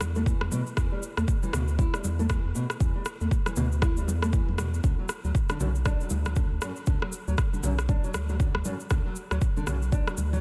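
A driving, earthy afro house groove at 118 BPM in E minor with a 59% sixteenth swing, where an up-front deep electronic kick and a tape-toned layered rim click sit over grainy, close shaker and thin-skinned, damped congas in the background, while a round, dark analog bass with tube saturation and sidechain pumping holds the low end and a small, thumb-plucked nylon-string guitar arpeggiates through dub echo from 0.2 seconds, moving from E7(no3) to D6 at 4.8 seconds in a dense, heavily limited mix cut from a longer piece.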